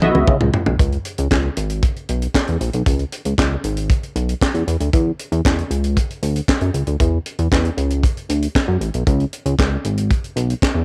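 Funky and danceable, this brief early-eighties boogie funk excerpt moves at 116 BPM in a straight 4/4 feel. A tight funk drum kit opens with a fill that runs until 0.8 seconds, then carries on to the end at 10.8 seconds with handclaps, hi-hat, kick drum, snare drum and toms. The kit sounds acoustic and natural in a small room, with a high-tuned snare and a tight kick sitting up front, and it carries a cassette tape character. Alongside it, a chorused synth bass plays throughout, ranging from G#1 to C#3, its retro, glossy tone built from pulse wave, sawtooth and triangle sources with pulse-width modulation, ring modulation and a filter pluck. The bass has a fast attack and sustained, mellow body, and it also sits up front. The whole thing carries the intimate ambience of a home recording on cassette.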